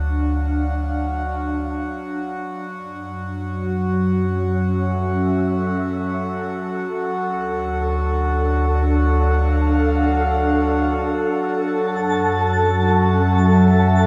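Ambient music in free time and F# minor, this short passage taken from a longer piece feels serene and melancholic. A glassy FM pad carries sustained chords with an ensemble chorus and its own reverb, drifting between Dm and F#m7, while a deep, rumbling drone sits underneath with a dark, ominous weight. A reedy pedal harmonium holds a close-miked, dry drone in the middle register, giving a breathing, full presence against the synths. The pad, drone and harmonium all fade in together from the start, and at 11.8 seconds a twinkling granular texture with an octave-up shimmer enters high above, sparkling until the end at 14.1 seconds. The whole sits in a wet spring reverb with a cassette tape character.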